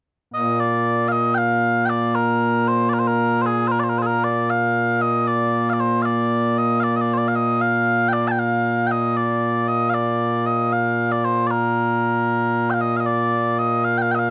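Set in 6/8 with a straight feel, this Scottish traditional pipe tune moves at 77 dotted-quarter beats per minute, a stride that gives it a proud, stirring character. A single set of small bagpipes carries the whole piece alone, sounding from 0.3 seconds to the end of this cut from a longer work. Their tone is mellow and sweet, with a continuous, unbroken sound that sits up front in the mix. The melody runs through one statement of its main strain and begins it again at 13.1 seconds, just as the recording breaks off. A moderate studio reverb and a dark, warm production give the pipes a gentle glow.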